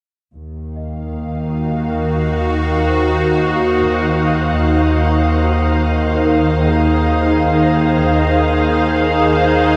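Awash in a deep shimmer reverb with an eight-second tail and a softened top end, this serene, reflective ambient passage is cut from a longer piece. A dark, smooth bowed double bass section and a sawtooth-and-pulse analog drone, its pulse-width modulation and chorus sitting in the background, form the foundation, while an evolving, morphing wavetable pad enters up front at 1.1 s with sustained chords. At 0.8 s a very quiet, close-miked celesta adds delicate, bell-like arpeggios with a sweet, bright ring.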